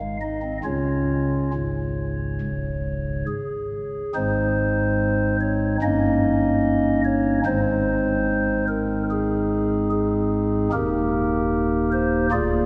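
A solo pipe organ opens on an Ab chord that resolves to Db at 0.6 seconds, its stopped flute voice soft and hollow with a touch of chiff on its attacks. This is a brief, reverent chorale-style classical passage cut from a longer piece, moving in 4/4 at around 66-75 BPM with a flexible, rubato feel. At 4.2 seconds the harmony shifts toward Ab major, passing through Eb7/G and back to Ab before settling on Eb. The organ spans from a deep Db1 up to F5, its flute stops voiced in a mellow baroque manner that sounds close and present. A long church reverb of about 3.3 seconds surrounds the instrument, lending the music a majestic, spacious glow.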